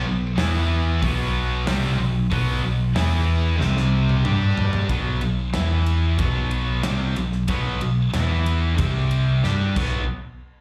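A straight, driving 4/4 hard rock groove in a live club setting, where an up-front cranked stack guitar with overdrive and slapback echo, a scooped high-gain guitar, and a heavy double-tracked guitar sitting in the background until 4.9 seconds play power-chord riffs over a growly picked bass, while a gated 80s drum kit with a tight kick and bright cymbals enters at 0.4 seconds and closes each section with a fill, all set in the venue's light club reverb.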